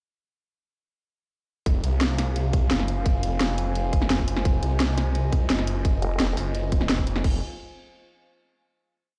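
Tense and mechanical, this short dark technical drum and bass piece crashes into its drop at 1.7 seconds with a tight, up-front layered kick, a cracking snare with hi-hats and crash in the kit, a snarling, detuned sawtooth bass that growls through chopped, distorted phrases, and a deep, moody analog pad holding lush chorused chords that pump against the beat, while a nasal, formant-filtered wobble bass cuts in briefly at 6.0 seconds before a final chord rings into the stony reverb of a bare room from 7.2 seconds.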